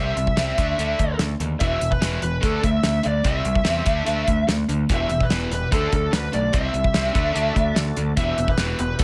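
A dark, up-front bluesy lead guitar carries the melody in this driving, swaggering classic rock excerpt, its distorted, picked line sitting between A4 and E5. Beneath it, a bright, double-tracked distorted electric guitar plays a compressed riff, while a growling picked bass, overdriven and amped, holds down the low end. A damped 70s drum kit enters at 0.2 seconds with a fat snare, tight kick and hi-hat, its dry, rolled-off sound placed up front. At 4.9 seconds a tonewheel organ joins in the background with full, sustained chords, lightly overdriven and colored by chorus vibrato and a slow rotary speaker. The straight 4/4 groove moves at 146 BPM through a progression of C, D5 and E5 that settles into Em, D and C, all set in a small room with light reverb.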